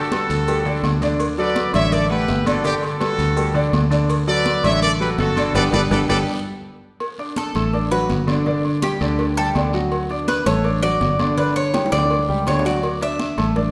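A tight trumpet section with light vibrato carries the melody over a polished baby grand piano and a dark, foam-muted fingered electric bass in this festive, danceable salsa excerpt at 165 BPM in D major, while bright, high-tuned congas, ringing agogo bells and timbales, very quiet cowbell and bongos, raspy guiro and grainy maracas fill out the percussion. After a drum fill and band accent from 5.5 s, the trumpets and maracas stop at 6.2 s, and a metallic, double-strung Cuban tres takes an up-front solo from 7.4 s. The recording sits in a wet recital-hall reverb as the chords move between Gadd9, D and G5.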